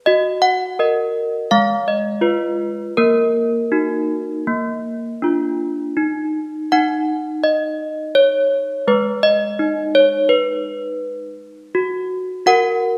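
A set of desk bells plays alone throughout this short classical tune, their clear, ringing tone sitting up front with a clanky edge and a slightly out-of-tune shimmer. The mood is wintry and solemn, moving in a straight, measured four beats to the bar. The bells range from the lower middle register up into a bright upper range, tracing a minor-key progression through shifting inverted chords before a chordless stretch at 6.0 seconds. Harmony returns at 8.9 seconds and settles on a major chord at 11.7 seconds. A moderate recital-hall reverb lets each strike hang in the air, and the passage is cut from a longer piece, ending at 13.0 seconds.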